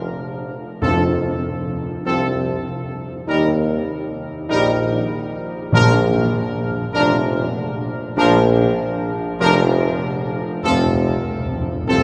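A roomy solo tuba sits up front and opens this triumphant, majestic classical brass passage alone, laying down the bass line before the rest of the ensemble enters at 0.8 seconds. A tight trumpet section carries the melody with a bright, present edge. Behind it, a mellow French horn section with a smooth top and a clear trombone section with light vibrato hold sustained chords over a progression that moves from F5 through Eb and Bb back to F. Timpani played with soft mallets on calf heads give round strokes in short bursts, closing with a fill from 10.6 seconds. The whole ensemble is heard from further back in a wet cathedral reverb, lending the music a grand, spacious sound, and the recording is cut from a longer piece.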